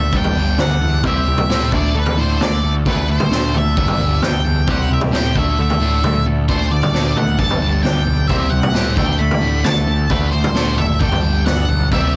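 A punchy, gritty garage drum kit sits up front in this bittersweet, restless quiet-loud alternative rock excerpt at 132 BPM, alongside a sludgy overdriven guitar riff, a dark octave-fuzz lead melody, bright twangy tremolo arpeggios in the background and a growly fuzz bass over a repeating Gadd9, C and Dsus2 progression in a small room.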